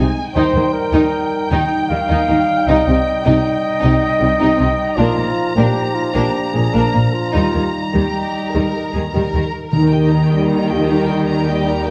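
A reverberant recital-hall ambience frames this heroic, adventurous cinematic passage, cut from a longer piece, in Eb major at 103 BPM in a straight 12/8, moving through Eb, Cm and Bb chords. Lush, vibrato-rich violins carry a high, expressive melody over a second violin line, with smooth, even violas and soft-attacked cellos in the background, a mellow, distant French horn section holding sustained chords, and a dark, bowed double bass section underneath. A smooth-topped solo trumpet with light vibrato adds stabs until 9.5 s, and timpani struck with medium mallets sound close and dry from 9.7 s.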